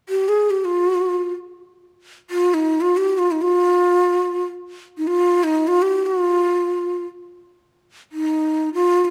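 Close, detailed microphones and a light reverb frame this brief, soulful fragment of Persian modal ensemble music. A lone end-blown reed-cane ney plays up front from 0.1 to 9.1 seconds, moving between Eb4 and Ab4 with a breathy, hollow tone, soft attacks, lifted highs and vibrato. The effect is hypnotic.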